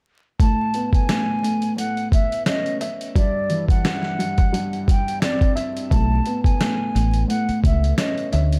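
Boom-bap hip-hop excerpt with a nostalgic, confident mood, in which an airy, mellow silver flute with vibrato and a soft attack carries the melody through analog delay over a dark, woody, boxy upright piano with long sustain and cassette-tape coloring, a gritty, compressed, pitched-down sampler drum kit with a thumpy kick and medium-tuned snare re-recorded in a large room, and a round, deep dub bass that enters at 5.9 seconds, set in an echo-heavy mix with vinyl crackle and little reverb.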